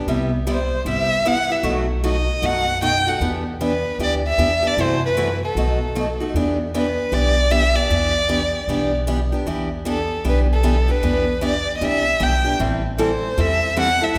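A wet concert-hall reverb surrounds this fiery, swinging jazz manouche excerpt, cut from a longer piece, where a bright, boxy picked steel-string guitar with audible finger squeak sits up front beside a woody, thumpy pizzicato upright bass. Entering at 0.5 seconds, a close, expressive bowed violin carries the melody with rich vibrato and portamento, standing slightly louder than the rhythm section. The harmony moves through minor-key changes such as Cmaj7, B7 and F#m7b5 before settling on Em7 and finally Am7 at 12.6 seconds.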